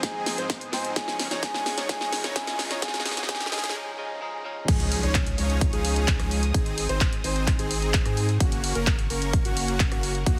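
Festival progressive house with an uplifting, anthemic mood, cut from a longer piece, in a straight 4/4 pulse. A build-up carries a drum fill and a filter sweep on a dark, boxy concert grand playing arpeggios, while an airy, close-miked baroque flute sings an expressive melody with vibrato and dub echo until 3.7 seconds, alongside a twangy, direct-recorded clean electric guitar in the background. After a short break, the drop lands at 4.7 seconds with a very quiet electronic impact. The guitar stops there, while huge, detuned supersaw chords keep driving the riff with sidechain pumping and dub echo. Underneath, a thick, saturated sub bass pumps, while a punchy, up-front kick and a layered big-room kit with a huge snare, handclaps, hi-hat, rim click and crash cymbal sit in studio ambience. A distant, very quiet string section holds bowed chords high above, and the whole mix has a heavily compressed, radio-style sound with light reverb.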